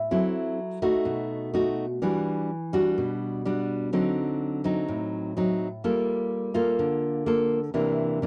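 Bossa nova in a breezy, sunny mood, moving at 126 BPM in a straight 4/4. A lone nylon-string guitar carries the whole piece, fingerpicked in a classical manner with a warm, full-bodied tone and the crispness of fresh strings. It sits up front in a dry, close recording with a 1970s studio character, so the finger squeak comes through clearly. The guitar ranges from A2 to A4 as it works through a richly coloured progression, from F#m7b5 and B7 into Em9, then D7b9, Gm9 and finally C9. This short cut from a longer piece runs just over 8 seconds.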